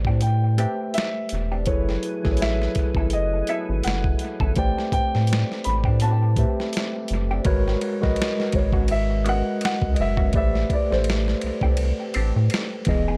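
The groove sits at 83 BPM in 4/4 with a lazy 16th-note swing, carried by a compressed, gritty boom bap sampler-style drum kit whose thumpy kick, medium-tuned snare, hi-hat and ride cymbal sit up front with dub echo trailing off them. This sultry, smooth neo-soul R&B excerpt is anchored by a rubbery square bass, hollow and bouncy with a fast-attack filter pluck and a moving notch, dark and sustained in the low register. A mellow tine electric piano comps through the whole passage in clean, direct tones, while a dark, boxy baby grand piano with short sustain carries the melody, both soaked in dub echo. Deep in the background, a picked, clean hollow-body jazz guitar adds a second line through wah and echo, and a fat tonewheel organ with key click, slow rotary and chorus vibrato holds sustained chords from 1.7 to 7.4 seconds. The harmony drifts through lush minor eleventh chords, opening on Am11 and moving to G#m11 as a new section begins at 7.5 seconds, all in a dry, echo-heavy mix.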